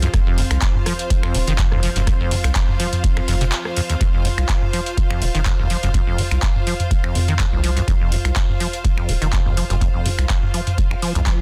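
A driving, trippy acid house groove at 124 BPM in 4/4 with a light sixteenth-note swing pushes a deep electronic kick and a booming, dry analog drum machine of snaps, handclaps, metallic hats, rim clicks, toms and a softly clipped snare beneath a rubbery, resonant acid bass riff with tape echo, a round triangle-and-sine bass, bright bowed strings with light vibrato and a smooth detuned pad that pumps in the background until 4.0 seconds, all in a dense, dry, heavily limited mix cut from a longer piece.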